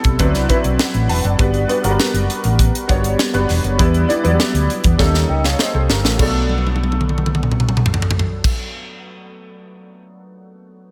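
Bittersweet and slick, this short cut from a longer polished 1980s jazz-funk pop piece moves at 100 BPM in B minor, with an intimate concert grand piano, treated with analog chorus and carrying audible action noise, opening on a fill at 0.2 seconds over chords such as D13, Gmaj7 and D#7#11, while a dark, round hollow-body electric bass holds the low end until 8.5 seconds and an airy, up-front fusion drum kit with a high-tuned snare and punchy kick adds fills from 5.0 seconds, with the harmony arriving on Bm7 at 6.2 seconds, all in a small room ambience.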